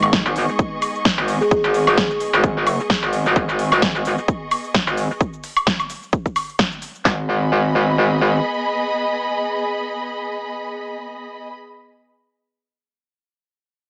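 A metallic, saturated wobble bass with chorus and sidechain pumping anchors this aggressive, gritty bass house drop, backed by two overdriven big-room drum kits of punchy kick, snare, handclaps, crisp hi-hats, shaker and woodblock, while a lush, dark bowed string section with vibrato and its own pumping carries on to 11.5 seconds, a deep, detuned analog pad sits very quietly beneath until 3.3 seconds, and a buzzing kalimba rings briefly in the background with dub echo at 1.4 seconds, all heard through a small-speaker sound with light reverb.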